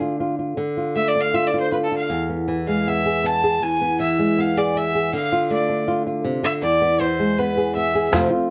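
Close, detailed microphones and a dry room give this dramatic, intense flamenco fragment from a longer piece an intimate presence. A dark, thumb-plucked acoustic guitar carries the melody up front over a Dm and E harmony, while a reedy, gut-string violin in period style enters at 1.0 seconds with a bowed second line and solo. A snappy, band-limited cajon played with soft hands appears only briefly at 8.1 seconds.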